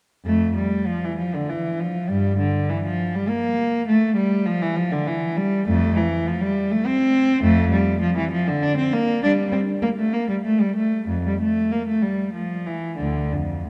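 Flowing and radiant, this short cut from a longer classical piece is a baroque-style suite movement for unaccompanied cello in 3/4, played with a rubato feel and shifting into a minor key at 7.4 seconds. A single bowed cello sits up front, its tone warm and focused with vibrato and a smooth top, ranging from D2 to D4 between 0.3 and 13.7 seconds. A wet concert hall reverb with a 2.6-second decay surrounds it in a dark production.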